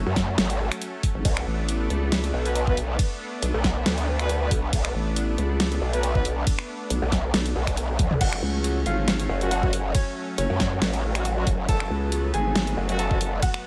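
Set in a digital ambience, this menacing, heavy wobble dubstep excerpt with a half-time, swung feel is built on a nasal, resonant vowel-sweep wobble bass and an aggressive, detuned growl bass, both overdriven, chorused and up front, over a knocking electronic kick and a layered kit with a huge snare, bright hats, crash, ride, toms and finger snaps. A lush, warbling sawtooth pad sustains chords under a sidechain pump, while a dark brass ensemble with light vibrato punches dub-echoed stabs from 2.5 s. After a drum fill at 8.0 s, a brilliant, intimate baby grand piano enters at 8.2 s with an echoing melody, its action noise audible.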